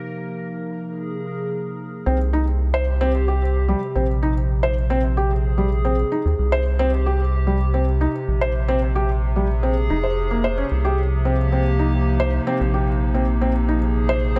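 A rubbery, hollow square bass sits up front from 2.1 seconds alongside a soft, felt-muted upright piano playing arpeggios through dub echo, both set over a warbling, nostalgic tape-like pad of sustained chords with chorus, while a bubbling, resonant stepped-filter texture colors only the opening 1.5 seconds of this intricate, melancholic IDM excerpt.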